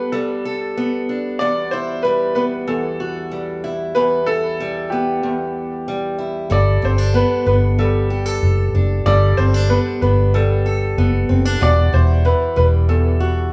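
A band playing live in one room comes through with moderate studio reverb and a faint mains hum, giving this short acoustic pop cut from a longer piece an easy, lived-in feel. The mood is carefree and sunny, moving at 94 BPM in a straight 4/4 in G major, with the harmony shifting between Gadd9 and Emadd9. A bright upright piano carries the melody in a brilliant, woody voice touched with tape echo, while a picked acoustic archtop guitar sits up front with a warm accompaniment from the opening. At 6.5 seconds a vintage muted fingered electric bass enters, dark, round and amped, its foam-muted tone standing forward in the mix. Together the three parts give the passage a polished yet relaxed glow that carries through to 13.5 seconds.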